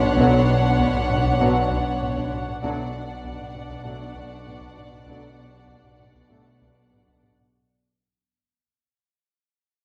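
This tense, eerie suspense cue opens on a full string bed at 98 BPM in 4/4 over a Bmadd9 chord. A violin section holds the melody high on F#5, while a second, more distant violin line sits between C#5 and D5 and the violas fill in on D4. Underneath, a dark, woody symphonic cello section carries the most prominent part, a riff between B2 and B3. An intimate chamber cello section, lush double basses and a clean, deep sine sub bass drone anchor it all on B. Compressed, saturated taiko drums struck with hard sticks sit in the background, and a very quiet, metallic vibraphone rings across a span from C#4 to C#6. A faint, high violin texture hovers only until 2.3 s, and mellow French horns and clear, roomy trombones enter with sustained chords at 0.2 s. The harmony shifts to D/B at 2.6 s, and the whole passage, bathed in a wet scoring-stage reverb, fades out as the short cut ends around 7.5 s.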